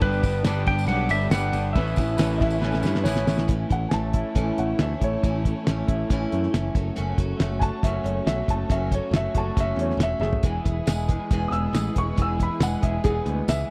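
Folk rock and heartland rock with a warm, hopeful mood, cut from a longer piece and captured as a dry, close 1970s-style studio recording. A clean, compressed lap steel guitar carries the melody with slide and volume swells over a clear grand piano in the background, both dropping out within the first few seconds. Beneath them sit a boxy, woody acoustic guitar with old strings, a twangy, slightly broken-up electric guitar riff, a very quiet bowed string section, a bright, direct electric bass, a damped 70s drum kit with a fat snare and tight kick, and a jingly tambourine, while a worn, slightly detuned upright piano with audible action noise enters as a second line at 2.4 s and takes a solo from 3.5 s, with a drum fill marking the turn.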